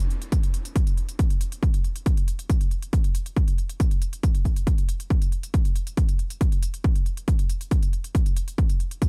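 A dry, close sound with little reverb opens this short cut from a longer techno track, giving it a dark, industrial mood. At 138 BPM in a straight 4/4, the groove is built only from electronic drums. A smooth, layered electronic hi-hat starts at 0.0 seconds and sits far back in the mix. The heavy electronic kick drum arrives at 0.3 seconds, up front and tape-warm, re-recorded in a small room. Both parts carry a produced, layered quality that keeps the stripped-down pulse weighty through its 9.1 seconds.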